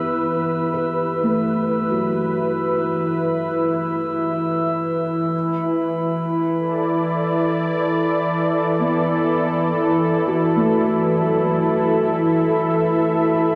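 In free time, this ambient excerpt drifts along with a reflective, melancholic air, its harmony shifting once at 5.3 seconds. Up front, a warm analog pad holds sustained chords throughout, its detuned sawtooth tone smooth and soft-edged under a chorus. Beneath it, a felt-muted upright piano plays quiet arpeggios, its thick felt giving a dark, mellow and intimate sound that trails off into a diffuse ambient delay. High above, a glass harmonica adds an ethereal, pure texture, glassy and slow to bloom, with a boxy small-room character. The whole mix is soaked in a huge reverb with a long 7.7-second decay and carries a dreamy cassette-tape tint.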